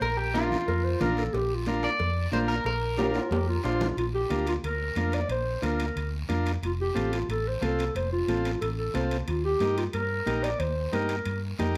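Lightly reverberant, this joyful, sunny slice of cumbia, cut from a longer piece, rides a straight four-beat pulse with congas, cowbell and timbales, and guiro. The high-tuned congas sit distant in a large room, while the ringing, metal-shelled cowbell and timbales sound compressed and saturated in the background, and a raspy guiro scrapes close by. Up front, a dark, round hollow-body electric bass anchors the low end, while a vintage, buzzy combo organ adds overdriven accompaniment. A twangy, slightly broken-up electric guitar carries the opening melody through spring and plate reverb plus analog delay until 3.6 s, and a drum fill at 3.0 s leads to a new section. From 4.0 s, a growling, gritty clarinet with subtone, light vibrato and scooped notes takes a roomy jazz-style solo over chords moving from Bb to F to Eb.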